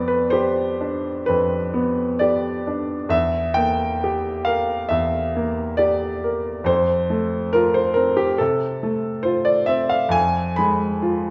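A clear, natural baby grand piano sits up front in a wet recital hall reverb, its short sustain carried by the resonance of a church or concert hall. This is a romantic nocturne for solo piano in F major, tender and nostalgic in mood, moving at a slow 63-70 BPM in 4/4 with a rubato feel. The piano plays alone throughout the 11.3-second section, spanning from E2 up to Cb6. The harmony opens on G7/F, shifts to Em7b5 at 3.1 seconds, settles on F at 6.7 seconds, and turns to Fdim near the close. Cut from a longer piece, the passage leaves the harmony hanging on that final diminished chord.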